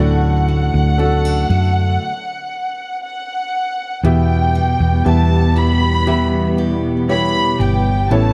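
Longing and melancholic, this slow pop ballad moves at 59 BPM in a straight 4/4, shifting from a D chord to E minor as it settles into E dorian. A dark, woody violin section carries the melody high with vibrato and a smooth sul tasto tone. A clear concert grand piano accompanies with deep bass and short sustain, while a round, punchy hollow-body electric bass sits up front. In the background, a bright, full-bodied picked steel-string acoustic guitar plays arpeggios with delay, and an airy analog pad holds sustained chords with chorus. A stop falls between 2.0 and 4.0 seconds, and at 4.0 seconds an intimate cello section enters with a second line, bowed with a soft attack and touched with delay. The production is dark and warm with light reverb, and the clip is cut from a longer piece.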